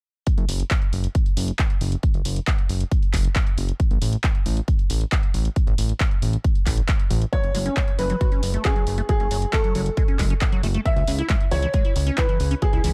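A fat, detuned sawtooth bass with a filter sweep pumps up front beneath a punchy, layered kick and a tape-toned analog drum machine's handclaps and pumping hi-hats in this euphoric, emotional uplifting trance excerpt at 136 BPM in F# minor, until at 7.3 s a clear, boxy grand piano with digital delay and a squelchy, resonant acid bass arpeggio through phaser and dub echo arrive over F#madd9 moving to C#m, within a dark digital ambience.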